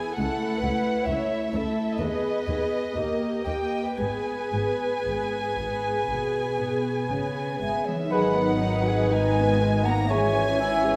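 Solemn and melancholic, this short classical passage in G# minor moves at a slow, rubato 56-68 BPM in 4/4 and is clearly cut from a longer piece. A warm chamber violin section carries the melody with vibrato and a soft attack, while a second violin section with a smooth top adds a lower line and a shaded viola section fills in the accompaniment, all bowed sul tasto with an intimate, close sound. Cellos and a rich, floating double bass section join at 0.2 s to anchor the bass as the harmony settles from A/C# into G# minor and D#. A hollow, airy flute enters in the background at 7.6 s, and at 8.1 s the music turns to a new section where a mellow French horn section holds sustained chords behind brief stabs from a solo trumpet with light vibrato. A clarinet with a dusky tone slips in near the close over a C#m/G# chord, and the whole ensemble sits in the generous, wet reverb of a scoring stage.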